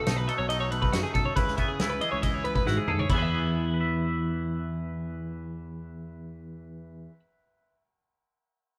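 Moderate studio ambience surrounds a band playing live together in one room, in this short cut from a longer piece. The music is intricate, bright math rock and midwest emo in E major, moving at 139 BPM in a straight 4/4. Up front, a twangy, clean electric guitar carries the accompaniment through a harmonic tremolo, while a compressed twelve-string electric guitar plays picked arpeggios between E4 and E5. A growly picked electric bass sits beneath them, direct and amped, and a loose, roomy acoustic drum kit with a fat snare sounds somewhat distant. The harmony moves from B9 to C#m7, and a drum fill at 2.7 s leads into a second section that settles on E. The drums stop at 3.2 s, leaving the guitars and bass to carry on.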